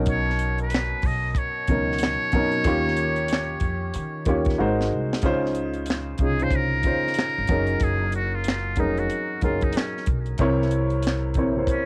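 Warm and soulful, this neo-soul R&B excerpt sways on a swung 16th-note groove, with a dark, mellow baby grand piano carrying rich jazz-tinged chords over a woody, growly pizzicato upright bass, all under a tight funk kit of finger snaps, hi-hat, high-tuned snare and tight kick. A muted trumpet, buzzy, thin and breathy with a whispered, intimate tone, sits up front, and after a drum fill at 4.6 seconds it takes a solo from 5.2 seconds to the end. The dry home recording on cassette lends tape colour to the piano, trumpet and drums.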